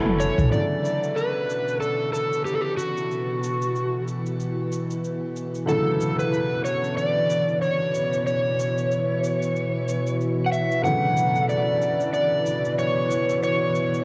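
Organic downtempo in B minor at 93 BPM with a swung 16th feel, this mystical, meditative excerpt opens on a Bm11 band accent and drum fill, where a mellow handpan, round sub bass and a barely audible udu sound only in the first half second. A soft felt-muted upright piano carries the accompaniment through cassette tape, tape echo and shimmer reverb, alongside layered electronic toms and cabasa, while a dark, overdriven slide guitar sits up front with the melody, colored by analog delay and shimmer. From 1.5 seconds a tense, string-like bowed drone holds sustained chords with vibrato, all set in a home cassette recording with a wet spring reverb and digital ambience.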